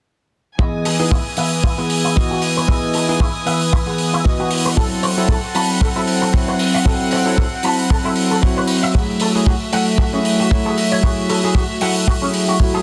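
A tight, dry kick and rolled-off hi-hat drive a lightly swung 115 BPM groove in 4/4 under this sunny, feel-good nu-disco cut in E major, where an up-front, bell-like tine electric piano pumps through lush chorus and digital delay, a soft, floating string section sustains distant, pumping chords, and a twangy, scooped, picked guitar riff runs through an envelope filter with a filter sweep, as the harmony moves from Emaj7 to Am6 at 4.8 seconds and F#m9 at 8.9 seconds.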